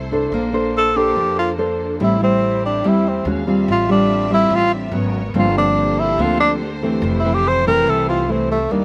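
Romantic and sophisticated, this short bossa nova fragment in F major moves at a brisk 143 BPM in straight 4/4. A mellow tenor saxophone takes the solo melody from 0.8 seconds, sitting up front with vibrato, a subtone and a smooth top in a jazz style. Beneath it, a thumb-plucked nylon-string guitar, also up front, gives classical-flavoured accompaniment. A pizzicato upright bass adds a woody, growly low end, and a lush bowed symphonic string section holds even, sustained chords in the background. The harmony drifts through rich extended chords, from Bbmaj9 and Am7 through Ebm11, Abm11 and Gm11 before settling on Fmaj7 near 7.0 seconds. The sound is dry, recorded outdoors with little reverb.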